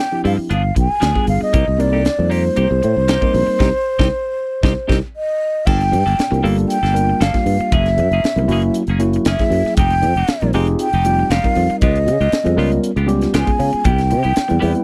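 A straight, driving 4/4 groove propels this funky electric jazz fusion excerpt, with a crisp drum kit of bright cymbals, high-tuned snare and punchy kick up front beside a growly fretless bass under analog chorus. A breathy, hollow concert flute carries the melody with slapback echo over a worn, slightly out-of-tune tine electric piano, while a twangy, compressed clean guitar adds stabs low in the mix. The band hits an accent from 3.6 to 5.7 seconds, capped by an electric piano fill at 4.6 seconds, before the harmony moves on in a dry, close 1970s-style studio sound.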